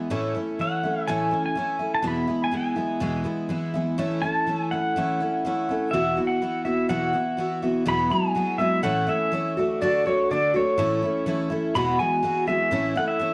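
A straight 4/4 pulse at 124 BPM carries this hopeful, jangly rock piece in A major, cut from a longer piece, as a picked twelve-string acoustic guitar opens at 0.0 s with shimmering, octave-doubled, full-bodied dreadnought picking through A, E and Esus2 changes. At 0.6 s a clean, compressed electric pedal steel guitar, played with fingerpicks and slide, enters up front with the melody between C#5 and B5, shaped by volume swells and a slapback echo. From 7.9 s the harmony moves through Eadd9, A and D, all set in moderate studio reverb within a dark, warm production.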